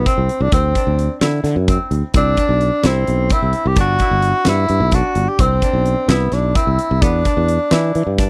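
Straight eighths in an uneven 7/8 drive this brooding progressive instrumental, cut from a longer piece, with a huge arena drum kit up front, its fat snare and punchy kick ringing in a big room, alongside a growly, bright fretless electric bass. A breathy tenor saxophone carries a jazz-style solo melody with light vibrato and scooped notes, while a woody koto, played with fingerpicks, spins mellow arpeggios over chords moving from C through D9, Cmaj7, Gmaj7 and Em7. The recording has a close, dry 1970s studio character.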